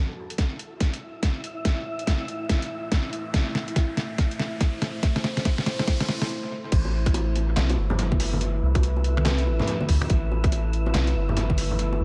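This brooding, meditative deep dubstep excerpt has an echo-heavy mix with light reverb and a haze of vinyl crackle, moving at 142 BPM in a half-time feel with swung 16ths in A minor. A deep, moody ambient pad holds sustained chords on an A5 harmony throughout, its detuned, chorused tone given a filter sweep across the build-up, while an airy, breathy wind-like noise texture hovers alongside it. A tight, up-front electronic kick and a gritty, pitched-down sampler-style kit of snare, hi-hat, finger snaps, handclaps and crash cymbal, soaked in dub echo, drive a drum fill through the opening as a background riser climbs from 1.4 to 6.3 seconds. After a short break, the drop lands at 6.7 seconds, where a round, soft sub bass arrives up front in the low register. Bright, band-limited bongos and congas with a vintage character join a moment later, their soft hand strikes trailing dub echo to the end of the cut.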